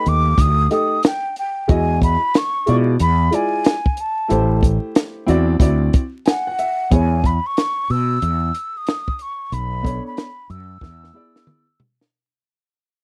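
A swung 92 BPM groove in 4/4 from a compact cocktail drum kit with a high-tuned snare and punchy kick drives this cool, smooth jazz-hop excerpt in E major, where a breathy, mellow concert flute with vibrato carries the melody over woody upright piano chords and a round, dark fretless electric bass, the piano adding a fill at 5.9 seconds before the dry, close 1970s-style sound with vinyl crackle fades out from 6.9 seconds and the drums close with a fill at 10.8 seconds.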